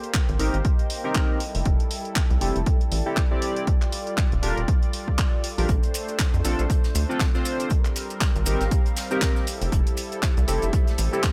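Swung sixteenths drive this sunny deep house excerpt, where a punchy electronic kick sits up front beside an overdriven kit of handclaps and hi-hat, a rubbery, dark square bass and glossy chorused polysynth stabs with delay both pump to the sidechain, and a smooth, detuned analog pad with tremolo and a warbling, nostalgic tape-like pad hold sustained major ninth chords in a mostly dry setting; a very quiet jazz brush kit and grainy maracas join at 5.7 s before a faint riser arrives at 10.6 s.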